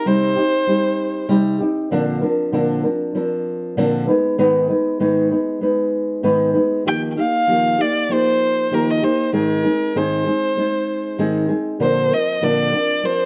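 A bowed solo violin, rich and focused with vibrato and touched by plate reverb and digital delay, opens this sunny, easy-going pop excerpt alongside a dark, thumb-plucked classical nylon-string guitar, then drops out at 1.3 seconds while the up-front guitar carries the accompaniment alone at 97 BPM with a light sixteenth-note swing in Eb major, until the violin returns at 6.9 seconds with a boxy melody over the guitar in a lightly reverberant room.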